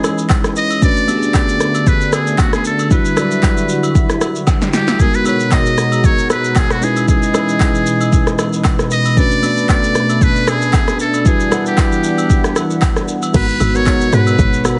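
This late-night amapiano excerpt opens with a muted trumpet playing a brilliant, buzzy jazz melody, close-miked, with light vibrato, scooped notes and a digital delay trailing its line. Beneath it, a bell-like tine electric piano adds clean, direct accompaniment, while an analog pad holds smooth, detuned sawtooth chords with a slow attack, subtle chorus and sidechain pumping. Up front, a layered deep house drum kit drives the swung groove with a deep kick, punchy snare, handclaps, rim clicks, shaker and crash, breaking into a drum fill at 4.5 seconds, as acoustic agogo bells and woodblock sit in the background. At the drop at 13.3 seconds, a woody, mellow log drum bass arrives with percussive, decaying hits with a fast attack, joined by tonewheel organ stabs with chorus vibrato and a slow rotary speaker. The whole mix has a heavily compressed, radio-like character with its highs trimmed, giving the deep, nocturnal mood a dusky, intimate sheen.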